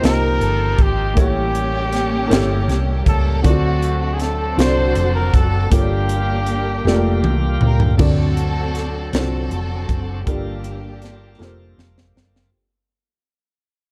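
Solemn and soulful, this slow gospel excerpt moves in a straight 6/8 at 53 BPM in G minor, cut from a longer piece. A bright, punchy trumpet carries the melody with vibrato in a pop-style solo until 7.6 seconds, alongside a lush, distant string section whose bowed lines bend with portamento and linger until 11.8 seconds. Beneath them a worn, woody upright piano, slightly detuned, plays the accompaniment, while a shouting tonewheel organ sits in the background holding sustained chords through a slow rotary speaker with light overdrive and key click. A round, up-front hollow-body electric bass anchors the low end, and a polished fusion kit with a high-tuned snare and punchy kick plays fills at 6.9 seconds and again near the close. The harmony moves through Eb69, A7b9, D7 and Gm9, and from 8.0 seconds the piece fades out under a dark production with light reverb.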